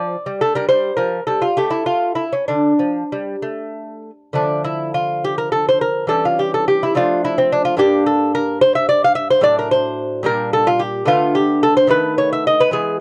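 A dry, close 1970s-style studio sound frames this short cut from a longer solo lute piece, a solemn, introspective baroque-style dance in a rubato 6/8, its delicate fingerpicked gut strings, some octave-doubled, sitting up front as the harmony drifts through minor colours before ending on a B7/D# at 11.9 seconds.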